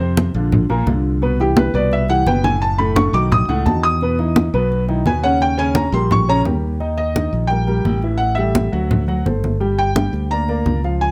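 A straight 4/4 pulse at 172 BPM drives this sunny, lively slice of Afro-Cuban jazz, with low-tuned congas entering at 0.2 s, their soft-handed tone ringing yet close and dry. Underneath, a modern fingered electric bass sits up front with a bright, growly, direct edge, staying low between Gb1 and F2. An upright piano with a woody, natural tone and long sustain fills out the accompaniment across a broad register. From 1.4 s a felt-muted upright piano takes the melody, its soft, mellow, intimate voice carrying a solo through the opening section until 6.8 s, dressed in plate reverb. The harmony moves restlessly through colourful chords such as Bbadd9, Cmaj7, B9 and Eb7 before the second section shifts toward A5, D7 and Gm7, all set in a light room reverb.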